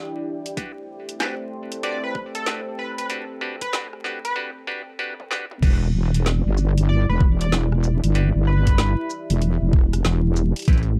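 Moody, detuned analog and ambient pads open this gritty, swaggering glitch hop excerpt in E minor at 95 BPM under vinyl crackle and a filter-swept build-up, as a knocking, overdriven kick and a drum kit with a woody snare and bright hats push forward beside twangy, nasal clav stabs and an edgy, tearing sync lead with 12-bit grit and vibrato, until a fill at 5.2 seconds drops at 5.6 seconds into a heavy, saturated wobble bass up front.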